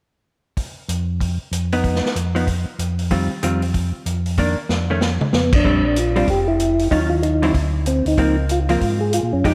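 A vintage drum kit with dark cymbals and a punchy kick opens this bluesy, greasy soul jazz organ trio swinging at 189 BPM, joined at 0.9 seconds by a round tonewheel organ bass through slow rotary speaker and chorus vibrato, then a clean, compressed hollow-body guitar in accompaniment, before a drum fill ushers in a soft, flute-like percussive organ melody with analog delay at 5.3 seconds, all bathed in a dreamy, lush hall reverb.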